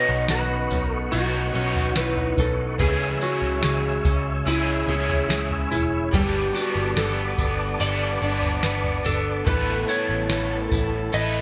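Bright 1980s-style digital production and a moderate plate reverb frame this ethereal, floating dream pop excerpt at 72 BPM, where a dark, clean lap steel guitar carries the melody with subtle chorus and delay over a shimmering, octave-doubled twelve-string acoustic guitar playing arpeggios, a double-tracked overdriven semi-hollow guitar with harmonic tremolo and lush chorus, a flute-like tonewheel organ holding chords through a fast rotary speaker in the background, a round, foam-muted electric bass entering at 0.1 seconds, and a soft vintage rhythm box with deep kick, crisp snare, tambourine and toms coming in at 0.3 seconds.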